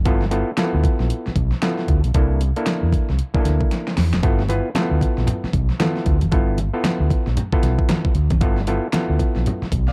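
Dark and dry, this gritty funk excerpt moves at 115 BPM with a swung 16th-note feel in G mixolydian, built on an overdriven, round fingered electric bass up front, stringy, percussive clav stabs pushed through a combo amp over G13 and C13 chords, and a layered, distorted pop drum kit with knocking kick and fat snare re-recorded in a small room, whose fill at 3.7 seconds ushers in low-tuned, hard-handed congas in the background from 4.2 seconds.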